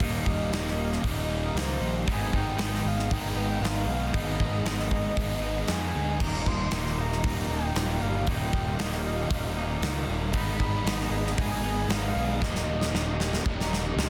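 Shoegaze and dream pop rock with a dense, heavily limited master, wistful and blissful, built on a wall of overdriven semi-hollow guitar, sludgy double-tracked distorted guitar and twangy, scooped electric guitar with reverse reverb, all sitting in the background behind a fuzz-driven picked electric bass. A reedy, woody FM lead carries the melody with soft, sustained tones shaded by chorus, tremolo and analog delay, while a dark, detuned analog pad and a very quiet, shimmering twelve-string acoustic guitar picking boxy arpeggios fill out the harmony. Up front, a gated 80s drum kit with bright cymbals and a tight kick drives the song in a big, airy room, ending with a drum fill at 12.4 seconds as this short cut from a longer piece closes.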